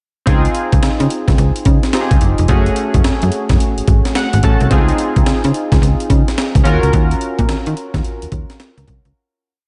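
A hard-swung, gritty breakbeat drum-machine groove with a thumpy kick and high-tuned snare drives this bouncy, flirty new jack swing R&B piece at 108 BPM in Db major, where a snappy, metallic slap-like FM bass plays a swung synth-funk line with muted ghost notes under airy, warbling chorused analog keys holding rootless chords with grace notes and a short fill at 3.9 seconds, all in light reverb before a fade-out from 6.9 seconds.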